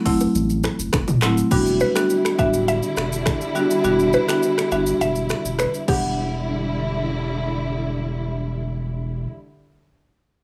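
A snug small-room reverb gives this short excerpt of mellow, hypnotic afrobeats a close, intimate sound. A woody, bright marimba struck with medium hard mallets sits up front from 0.0 seconds, over a thick, saturated sub bass with a deep, sustained tone. A layered electronic deep house kit of deep kick, metallic hats, finger snaps, handclaps, rim clicks, shaker, toms and crash cymbal carries an overdriven edge until about 6.0 seconds. Close, dry bongos and congas played with hard hands add a very quiet touch only at the outset. At 1.5 seconds, as the harmony moves from D to Em7, a bowed studio string section enters with vibrato, portamento and a smooth top, holding sustained chords. Above it, a round FM synth pluck with a noise layer, fast attack and short decay carries the melody, treated with chorus and tape echo.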